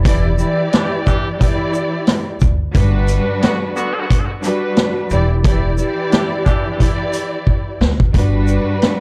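A swung sixteenth-note groove in 4/4 drives this reflective, tough boom-bap hip-hop fragment, cut from a longer piece. The vintage drum kit sits up front with a tight kick, a medium-tuned snare, rim clicks, hi-hat and shaker, its saturated, gritty tone rolled off at the top, and a drum fill arrives at 7.5 seconds. Beneath it, a pizzicato upright bass on steel strings gives a woody, thumpy low end. A lush, bowed symphonic string section carries the harmony with vibrato and portamento, its smooth top softened by cassette-tape colouring and filtering as the chords move between Em7 and Gmaj7. From 0.7 to 6.7 seconds, a clear, vintage-styled horn section adds filtered stabs with light vibrato and a touch of delay. Light reverb and a dark overall production tie the parts together.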